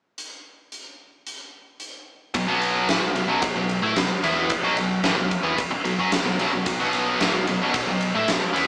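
A straight, driving four-beat pulse opens this heavy hard rock clip, with a huge arena drum kit starting alone at 0.2 seconds: a punchy kick, fat snare, hi-hat and ride cymbal ring out in a hall-like space, the cymbals bright and the kit placed up front. At 2.3 seconds a high-gain distorted guitar crashes in on a B5 power chord and drives a picked riff. The guitar is double-tracked and bright, and sits up front beside the drums. A hollow-body, short-scale electric bass joins at 2.4 seconds, its dark, round, amped tone tucked low in the background. The band sounds as though it is playing live in one large room with moderate reverb, yet the overall sound has the quality of a small speaker.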